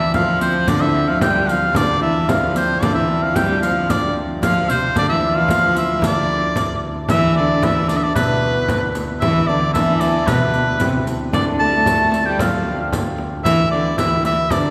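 Driving and mysterious, this medieval dance in 2/4 is cut from a longer piece, with a bright, up-front shawm carrying the folk-style melody with vibrato and a smooth top over a shimmering hammered dulcimer and a woody, biting viola da gamba played bowed with light vibrato. A principal organ stop holds a smooth drone with chiff beneath, while a frame drum sits in the background and a close, dry riq adds bright jingles from 0.1 seconds. The band plays live in one room, wrapped in a wet church reverb, and the passage moves into a new section at 7.1 seconds.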